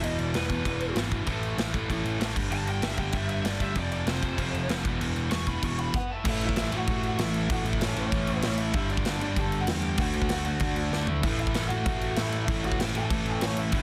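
A lead guitar played through a small cranked amp takes the spotlight with a lo-fi, overdriven solo over the opening 6.2 seconds of this rowdy, rebellious punk rock cut, which is taken from a longer piece. Beneath it, two picked rhythm guitars hold the riff from the background, one crunchy and the other bright and biting, while an amped, growly electric bass adds a picked, overdriven low end. Up front, a big acoustic rock kit in a studio room drives the straight 4/4 at 193 BPM with a punchy kick, a medium-tuned snare, crash cymbal and toms, and a short drum fill lands at 10.9 seconds. The harmony moves from E through power chords on A, G, F and E before the second section cycles through A, G and D back to A. Dry, with little reverb, the sound is dense and heavily limited in a modern master.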